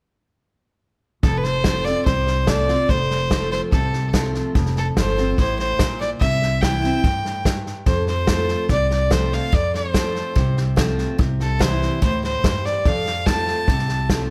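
A straight 4/4 honky-tonk and classic country groove at 145 BPM in F major sets a heartfelt, sunny mood in this excerpt, with a vintage drum kit's punchy kick, medium-tuned snare and hi-hat up front in a natural studio room, a woody pizzicato upright bass, and a bright, full-bodied picked dreadnought acoustic guitar with audible finger squeak all starting at 1.2 seconds beneath a biting, earthy fiddle melody with light vibrato and analog delay, all under light reverb as the chords move between F and C.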